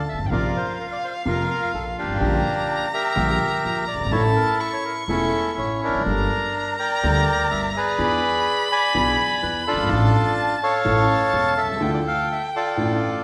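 Pulled freely in rubato over a four-beat metre, this sultry, dramatic tango fragment, cut from a longer piece, puts a reedy, up-front bandoneon on the melody while a single close, bowed violin sings a second line with vibrato, portamento and a soft attack. Beneath them, an intimate vintage grand piano with deep bass and audible action noise carries the accompaniment, and a woody, thumpy pizzicato upright bass drops out at 11.5 s. A short break from 11.8 s closes the passage, all of it set in a wet recital-hall reverb.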